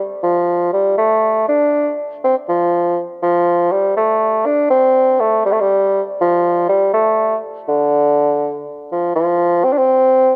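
A steady 6/8 pulse at 81 BPM in dotted quarters carries this wistful yet festive Andean folk fragment in D minor pentatonic, where a lone mellow bassoon with light vibrato and a vintage, classical-style tone sits up front for the full 10.4 seconds, ranging from D3 to D4 and shifting into a brief new section at 9.2 seconds, all bathed in a moderate plate reverb within a rough home-demo mix cut from a longer piece.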